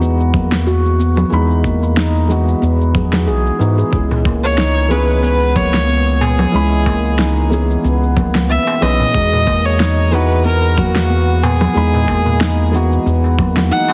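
An excerpt of meditative, mystical organic downtempo opens on a ringing handpan arpeggio over a felt-muted upright piano with audible action noise, both carrying digital delay, as a deep, round analog bass up front and layered electronic cabasa, congas and a fat snare settle in, joined at 0.3 seconds by a gritty, overdriven kick, with the piano and bass gently pumping over a swung sixteenth-note feel. At 4.1 seconds a crisp, band-limited darbuka slips in far back, and at 4.4 seconds a clear, biting kamancheh takes the melody up front with light vibrato, portamento and an airy bow, its lines echoing through digital delay. The chords move from Emaj7 to C#m and back, and the mix has light reverb and a heavily compressed, radio-like sound.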